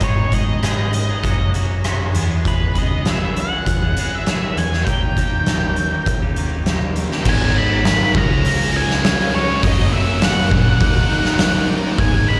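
An oversized, low-tuned acoustic drum kit sits up front in this brooding, angsty quiet-loud alternative rock passage. Its boomy kick, fat snare, rim clicks, hi-hat and crash ring through a big, pumping room with a saturated, gritty edge. A dark, fuzzy octave lead guitar carries the melody over a round, amped picked bass, the lead coated in distortion, slapback echo and analog delay. For the first 7.3 seconds a bright, twangy clean guitar picks arpeggios soaked in spring reverb and slapback. At 7.3 seconds the twangy part stops and three riffing guitars take over: a crunchy overdriven one and a hollow-body one, both very quiet, plus a double-tracked high-gain guitar with distortion and slapback in the background, while a very quiet tonewheel organ holds soft, flute-like chords through a slow rotary speaker. The cut, taken from a longer piece in straight 4/4, sounds like a live gig heard through the venue's PA, with recital-hall reverb.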